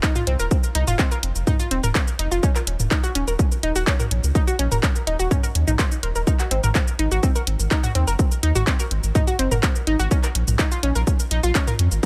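At 125 BPM in a straight 4/4 pulse, this hypnotic, dramatic melodic techno excerpt in Eb dorian drives a punchy, overdriven electronic kick up front alongside an overdriven house kit of handclaps, hi-hat, shaker and toms, while a deep, round analog bass entering at 0.3 seconds pumps with sidechain compression and a bright, detuned analog pluck with ring modulation and a filter sweep spins arpeggios through chorus and digital delay over chords moving from Ebm7 to Ab7 to Bbm in a dry mix.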